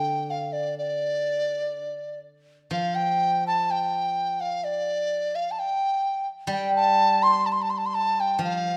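This Chinese traditional piece for a small chamber ensemble is graceful and wistful, moving at 63 BPM in 2/4 with a free, rubato feel in the D yu mode, tuned to A4 = 441 Hz. A large bamboo dizi carries the melody between D5 and C6, its hollow, mellow tone edged by a buzzing membrane, touched with vibrato, and given a crisp attack as it sits up front. Beneath it, a steel-string zither played with fingerpicks supports from D3 to G3 at a lower level, its silvery notes ringing. Both instruments play together from 0.0 to 8.8 seconds, with a new passage beginning at 2.7 seconds. A lush scoring-stage reverb with a 2.0-second decay surrounds the pair in this short cut from a longer work.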